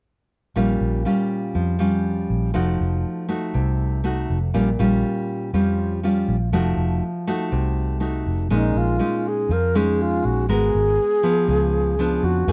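A dry, close 1970s-style studio sound frames this intimate, smooth bossa nova excerpt at 121 BPM in Bb dorian, where a full-bodied fingerpicked nylon-string guitar and a round, foam-muted electric bass lay down Bbm6 and F7b9 changes from 0.6 seconds before a reedy, airy alto flute with soft-attack vibrato takes the melody at 8.5 seconds as the harmony turns to Bb minor.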